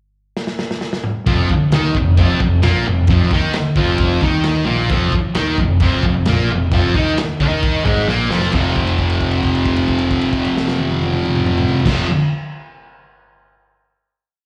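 Garage rock with a raw, swaggering attitude, this short complete piece drives along at 132 BPM in a straight 4/4, captured as a live gig heard through the venue's PA, with club reverb and a faint mains hum. A crunchy breakbeat drum kit opens with a fill from 0.4 seconds through a brief pickup bar. Its small-room sound is dark and gritty, with dark cymbals, a medium-tuned snare and a tight kick laying down a garage stomp groove. At 1.3 seconds a thick fuzz guitar comes in up front with a bright, double-tracked octave riff over an F7 chord, distorted and trailed by slapback echo. Beneath it, a fuzz-soaked fingered electric bass sits in the background, overdriven and tube-saturated, driving eighth notes as it doubles the guitar riff. After a second drum fill, the band lands on an F5 final chord at 8.5 seconds, and a held note rings out until 11.8 seconds.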